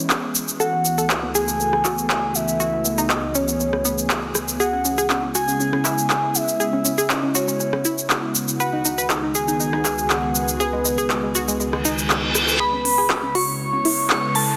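A dense, heavily limited mix with light reverb frames this expansive, emotional progressive house excerpt in C# minor at 120 BPM, where a thick, detuned unison pad holds sustained chords under a round, triangle-based octave-layered synth lead carrying the melody through chorus, phaser and delay. A bright, wave-folded analog pluck spins arpeggios with a filter sweep, while a crisp, overdriven big-room drum kit of hi-hat, handclaps, cabasa and rim click sits up front from 0.1 seconds. A downlifter opens the piece, a reverse cymbal arrives at 11.8 seconds, and from 12.6 seconds a riser drives a build-up as a pure, warbling FM bell adds a second line.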